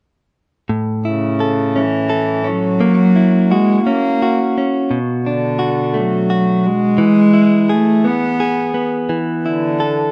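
A rough home-demo sound in a small room carries this tender, heartfelt pop excerpt in a slow 6/8 at 57 BPM in A major, where a clean, compressed, scooped direct-recorded electric guitar picks the accompaniment from 0.7 seconds through A, F#7, Bm7, E and Esus4, and a single bowed cello, played sul tasto with a soft attack and a pure, floating tone, sings the melody up front from 1.1 seconds.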